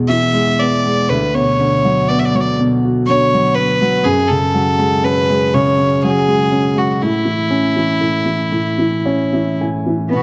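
A felt-muted upright piano opens this tender, nostalgic Celtic slow air at a rubato 60 BPM in 3/4, its mellow, intimate chords on E, Bm/D, F#sus2 and A sitting under an airy, nasal solo fiddle that carries the melody up front, with a piano fill at 8.5 seconds and a rich cello with vibrato and portamento entering on a single B3 at 10.1 seconds, inside a dark production with recital-hall reverb.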